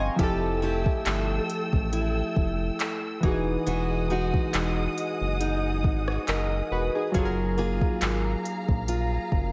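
This slow, tender contemporary R&B excerpt at 69 BPM opens with warm analog keys carrying a chorus shimmer, boxy picked archtop guitar arpeggios touched with delay, a round analog bass, and a veiled, muted string section holding distant sustained chords that pump against the sidechain. At 0.2 seconds a smooth, electronic R&B kit joins up front with a soft kick, crisp hi-hats, rim clicks and handclaps, swinging lightly on the sixteenths in a large-room ambience. The harmony drifts through major-ninth chords, Fmaj9, Emaj9 and Gbmaj9, beneath a dark, deep bass line.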